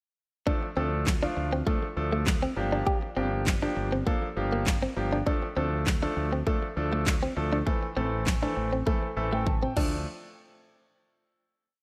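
A rough home-demo mix with light reverb opens this short, complete dance-pop piece in D minor, driving and energetic at 100 BPM in straight 4/4. A punchy, layered pop drum kit sits up front with a four-on-the-floor beat, its fat snare doubled by handclaps, plus crash cymbal and toms. A clear, polished concert grand piano plays syncopated drop-2 chords with short sustain and deep low end, pumping with sidechain. A round, dark fretless bass enters at 0.8 seconds with an off-beat line, also pumping and coloured by analog chorus, while a bright, compressed clean electric guitar picks a muted single-note riff through the same chorus. The verse moves through Dm, Gm7, Dm and Am, and near its close a piano fill at 8.9 seconds and a drum fill at 9.5 seconds lead into a final hit at 10.1 seconds.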